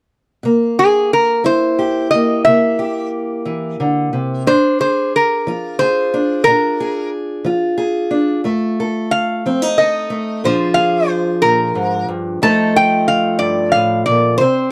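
A metallic, nasal lap resonator guitar played with slide and fingerpicks carries the melody up front from 0.8 seconds, over a bright, fingerpicked acoustic archtop guitar that enters at 0.4 seconds in this rollicking, soulful acoustic country blues excerpt at 60 BPM in 12/8, moving from C7 through Bb7 to F7 in a dry, close 1970s-style studio sound with light reverb.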